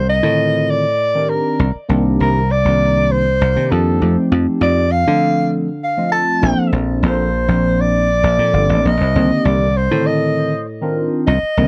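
This electric jazz fusion excerpt has a driving, intense mood in a straight 4/4 feel, cut from a longer piece. A mellow soprano saxophone carries the solo melody up front in a jazz style, with light vibrato and scooped notes, though its tone has a distant, roomy quality. Underneath, a thumbed slap bass sounds bright, punchy and direct, its foam-muted attack sitting dry and prominent in the mix. A clean tine electric piano, heard through its built-in speakers and colored by phaser, enters at 0.2 s to accompany with extended chords moving from Cm9 through F9 and Bbmaj9 before returning to Cm9. The close, dry 1970s-style studio sound carries only light reverb.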